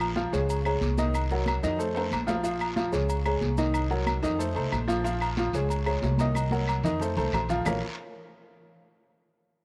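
Passionate and driving, this short salsa excerpt in Bb minor moves at 184 BPM, with a bright upright piano carrying cassette-tape colour and a dark, thumpy pizzicato upright bass up front over ringing agogo bells and timbales, woody claves, soft high-tuned congas, grainy maracas and a raspy, band-limited guiro entering at 0.2 seconds, as the chords cycle through Db5, Cm7b5, F and Bbm in a lightly reverberant home-recorded sound, with drum fills at 2.0 and 6.4 seconds.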